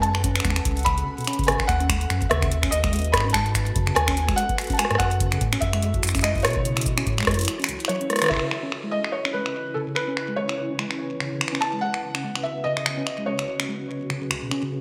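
IDM with an eerie, intricate mood and a lightly swung groove, this excerpt sets a soft, felt-muted upright piano melody with 12-bit sampler grit and digital delay over a dark, blurred granular cloud pad and mellow tine electric piano arpeggios that move through filter sweeps. A rubbery, nasal square bass with tube saturation, a dry, deep electronic kick and an up-front analog drum machine with metallic hats, finger snaps, rim clicks, shaker and gated reverb drive the first part. After a drum fill, a band accent at 8.3 seconds opens a new section with filter sweeps on the drums and pad, as the bass has already stopped at 7.5 seconds and the kick stops at 8.4 seconds, all within a bright 1980s-style digital sheen and plate reverb.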